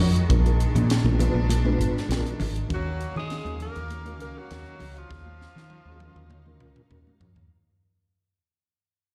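A straight 4/4 groove at 100 BPM drives this funky electric jazz fusion fragment in Eb minor, which fades out from the start. A crisp drum kit with a high-tuned snare and punchy kick, a woody, round fretless bass up front, and damped congas in the background from 0.8 seconds carry the groove, while a mellow tonewheel organ with fast rotary speaker and slapback echo accompanies smooth bowed symphonic strings over Bb7b9 and then Ebm9. At 2.7 seconds a clear alto saxophone and a raspy, growling tenor saxophone with its own slapback echo enter together, both with vibrato in jazz style, before a drum fill from 5.1 seconds, all heard as a live gig through the venue's PA in a small room with recital hall reverb.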